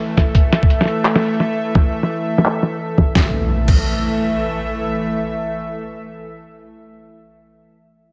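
Half-time drum and bass with a dark, cinematic mood, this short cut opens on a tense, string-like drone of detuned sawtooth unison with a noise layer, slow attack, vibrato, built-in reverb and sidechain pumping, holding sustained chords until 6.7 seconds. From 0.2 to 3.8 seconds a gritty, pitched-down, sampler-style boom bap kit of crash, handclaps, hi-hat and medium-tuned snare, its snare, hats and cymbals low-pass filtered, sits up front with a thumpy, tape-warm electronic kick, the drums under a filter sweep until 3.2 seconds. An electronic impact arrives at 3.3 seconds and rings out in a lush hall reverb.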